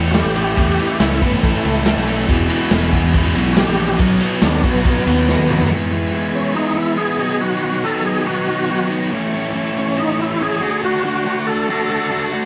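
A swaggering, sunny classic rock fragment in E major at 140 BPM opens with a biting overdriven guitar riff up front, a tight, distorted second guitar riffing in the background, a fuzzy picked electric bass, and a very quiet, bright tonewheel organ holding sustained chords through a slow rotary speaker. A thick, gritty overdriven tonewheel organ carries the melody, taking a solo with key click and chorus vibrato over the opening section. Beneath it, a muffled, lo-fi vintage drum kit with a punchy kick, dark ride cymbal, snare and toms sits forward in the mix, ending its part with a fill just before 5.7 s. At that point the drums, bass and background guitar stop, leaving the two organs and the lead guitar to carry the chords through E, B, A and D. The whole band sounds as if it is playing live together in a moderate stone room.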